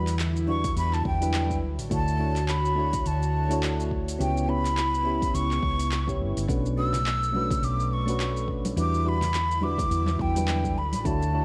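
Relaxed sunset chillout with a swung sixteenth feel, cut from a longer piece, where a breathy, hollow jazz flute carries the melody up front with vibrato and digital delay over mellow electric-piano-like synth keys with chorus, an airy, detuned pad in the background, and a round, dark hollow-body fingered electric bass, while a deep house kit of handclaps, metallic hi-hats and shaker is soon joined by an electronic kick, both overdriven and layered, soft-handed congas enter at 6.9 s, and the whole mix sits in a recital hall reverb with worn, warbling cassette tape pitch drift.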